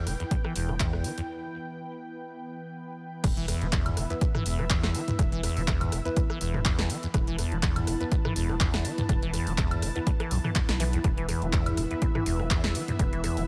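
A lightly swung 123 BPM acid house groove in E minor pentatonic, trippy and gritty, drives a tape-warm up-front kick, an overdriven punchy analog drum machine with crash, claps, hats, rim click, snare, toms and woodblock, a squelchy resonant sawtooth acid bass riff with filter sweep and delay, a saturated sine sub bass, a lush detuned warbling unison pad, and a cloudy granular pad in the background through a break from 1.3 to 3.2 seconds into the drop, where a soft, gritty 12-bit chord stab with delay joins from 4.1 to 12.0 seconds.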